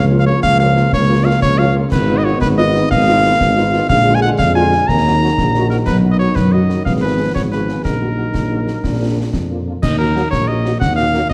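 A clear cornet opens this military-style wind band march, playing the melody up front with a light classical vibrato over sustained chords from a dark, punchy trombone section and a mellow, roomy tuba bass that also sits forward in the mix. A French horn section joins almost at once with a shadowy, distant accompaniment in the background, and concert snare drum, bass drum and clash cymbals with a somber cymbal tone arrive at 0.4 seconds. In 6/8 at 121 BPM on the dotted quarter, in Eb minor, the fragment has a martial, resolute mood, its harmony moving through Bbm/Db, Bb7 and Fdim/Ab. A new section begins at 9.8 seconds on an Eb minor chord, shortly before this cut from a longer piece ends. The whole band is bathed in the reverb of a recital hall, giving the production a dark, warm sheen.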